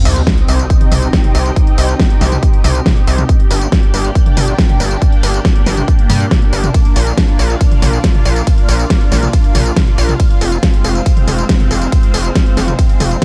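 This uplifting trance excerpt in C minor opens at 0.0 seconds with a very quiet electronic sub drop and swell beneath a lush, detuned unison pad, whose slow-attack sawtooth and square-wave chords carry chorus, phaser and sidechain pumping. At 139 BPM in a straight 4/4, with tuning set to A4 = 437 Hz, the mood is emotional and soaring as the harmony moves through Cm, Gm, Bb and Fm. A gritty, aggressive synth bass joins almost at once, its saturated sawtooth tone shaped by oscillator sync, ring modulation and a resonant filter pluck, pumping with the sidechain and sitting up front. A big-room dance kit of hi-hat, ride cymbal, tambourine, toms and a huge snare drives the groove. From 0.3 seconds, a punchy, layered electronic kick sits boldest in the mix, and the swell returns briefly near the close of this dark, digitally ambient production.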